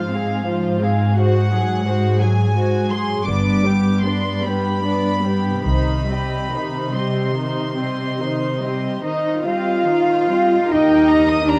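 An up-front cello section, bowed sul tasto with vibrato, anchors the bass of this solemn, yearning classical passage in C minor, a rubato 12/8 at roughly 46-59 BPM cut from a longer piece. Above it a floating, pure violin section carries the melody while a darker, intimate chamber violin section traces a second line and violas fill in the harmony, with a woody double bass section entering at 3.3 s. At 9.0 s a hollow flute in the background and a faint clarinet join on a second line over sustained, mellow French horn chords, all captured with close, detailed microphones and light reverb.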